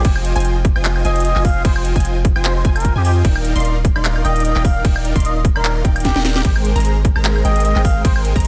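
A swung, half-time 150 BPM groove in 4/4 drives this lush, playful future bass passage in Eb major, where an overdriven, hard-clipped electronic kick and a trap kit with sharp snare, metallic hats, handclaps, woodblock and crash (plus a drum fill at 6.0 seconds) sit under a deep, mellow 808-style bass, a huge detuned supersaw riff, a background unison pluck with 12-bit sampler grit playing arpeggios, and a breathy, plunger-muted jazz trumpet melody with wah-wah, scooped notes and tape echo. The bass, supersaw, pluck and trumpet all pump through sidechain over Fm9, Ebmaj7 and Abmaj9 chords in a dense, heavily limited master.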